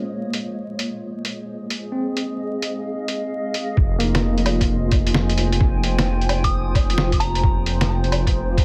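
Future garage at 131 BPM in F minor, this rainy, nocturnal fragment is cut from a longer piece and rides a swung 4/4 feel inside an echo-heavy mix dusted with vinyl crackle. An overdriven, gritty tine electric piano with fast tremolo and analog delay, heard through a combo amp, plays accompaniment beside a cloudy, evolving granular pad that holds sustained chords with built-in reverb and a filter sweep through the first 3.8 seconds, both parts pumping against the sidechain. A flickering, grainy texture hovers in the background over the opening Db69 harmony, while a lo-fi sampler-style kit enters at 0.3 seconds with muffled, pitched-down hi-hat, a medium-tuned snare and woodblock in studio ambience and delay. At 3.8 seconds the harmony moves to Fm7 as a deep, rumbling detuned saw bass arrives up front on F1 with a thumpy, compressed electronic kick. A soft, pure FM bell adds a brief melody between 6.4 and 7.7 seconds, its tone colored by chorus, phaser and analog delay.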